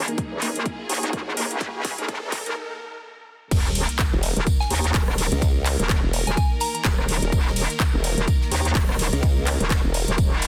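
A dense, heavily limited and nearly dry mix opens this bouncy, swaggering bass house excerpt at 126 BPM with a swung 16th feel, where a metallic, saturated wobble bass and a punchy, tape-warm electronic kick sit up front, while a clear, distant string section holds lush sustained chords and a riser with sub drop builds in the background. Bold, bright orchestra-hit-like synth stabs carry a filter sweep and tape echo during the build-up, and a house kit with metallic hats, claps, ride and rim clicks plays a drum fill before a break at 2.6 seconds. The drop lands at 3.5 seconds with an impact, adding a gated 80s kit of snare, hi-hat and tambourine in a bright stone room, soon followed by a detuned sawtooth formant-sweep wobble bass and a brief, gentle, warbling FM bell melody with chorus.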